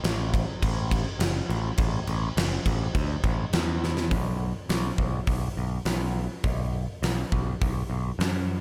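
Rock in a shoegaze and dream pop vein, this short cut from a longer piece moves at 103 BPM in a straight 4/4 with a dreamy, blissful mood. A growling picked electric bass carries the low end from F#1 to F#2, its bright, overdriven tone sounding direct, amped and punchy up front in the mix. Beside it, a huge arena drum kit plays acoustic crash cymbal, hi-hat, kick and snare, with a fat snare, a punchy kick and a big-room character that also sits close to the listener. A drum fill at 3.8 seconds leads into a new section at 4.1 seconds. The drums stop at 8.3 seconds, shortly before the close, while the bass runs until the end at 8.6 seconds. The overall sound stays dry, with little reverb.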